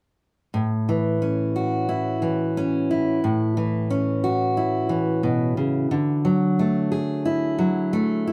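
A short folk excerpt with an uplifting, hopeful mood, carried by a single fingerpicked steel-string acoustic guitar that sits up front with a full-bodied dreadnought tone and audible finger squeak. The guitar plays an accompaniment role from 0.5 seconds to 8.3 seconds in a straight 4/4 feel, resting on an A chord before moving to Dadd9 at 5.9 seconds. Light reverb gives the sense of a band playing live in one room.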